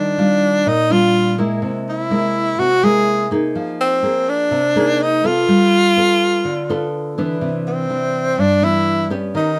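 Close, detailed miking and light reverb give this melancholic, wistful bossa nova fragment an intimate, clear presence at 124 BPM in 4/4. A breathy tenor saxophone carries the melody up front in a jazz style, its soft subtone and gentle vibrato sitting just ahead of a fingerpicked nylon-string guitar that supplies classical-tinged acoustic accompaniment. Both play throughout the 9.6 seconds as the harmony moves from Ebmaj9 through C7b13, Fm7 and G9 before settling on Cmaj9.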